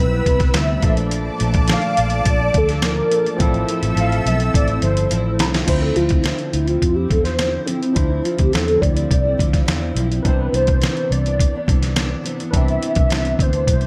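A gritty, pitched-down sampler-style drum kit with a thumpy kick sits up front in this hazy, nostalgic bedroom-pop fragment, playing a fill from 3.4 to 5.7 seconds beneath a warbling, detuned synth lead soaked in tremolo, chorus and tape echo that moves into a soft solo at 5.7 seconds, while a dark, foam-muted electric bass, a fingerpicked steel-string acoustic guitar with lush chorus, a barky, lightly overdriven tine electric piano and a thick, phased unison pad that stops at 5.7 seconds fill out the dry mix.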